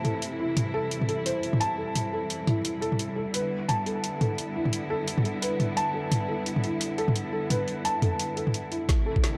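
Half-time drum and bass at 173 BPM with a swung sixteenth feel, this tense, dark excerpt sets sustained chords from a lush, bowed cello section, roughened by 12-bit sampler grit and sidechain pumping, beneath soft, muted upright piano arpeggios with audible action noise through a low-pass filter and analog delay, while an overdriven, up-front kit of woody snare, bright hats and toms drives over Am moving to Em7, until a drum fill brings in a knocking electronic kick at 8.9 seconds and a background riser at 9.2 seconds, all in a dry, gritty room with light digital ambience.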